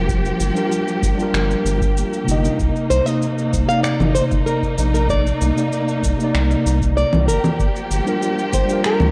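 Worn, warbling cassette tape with drifting pitch and a lush hall reverb colours this wistful sunset chillout excerpt in C minor, moving at 96 BPM in a straight 4/4 over Gm7 and Cm9 chords. A mellow, up-front tine electric piano with a low-pass filter and digital delay carries the accompaniment beside a rich, bowed studio string section holding soft-attack chords with vibrato. Underneath sit a round, dark analog bass, a deep electronic kick in the background, and electronic cabasa, finger snaps and congas with a small-room character, and at 2.9 seconds a bright, fingerpicked flamenco guitar with audible finger squeak and its own delay enters above them to take the melody.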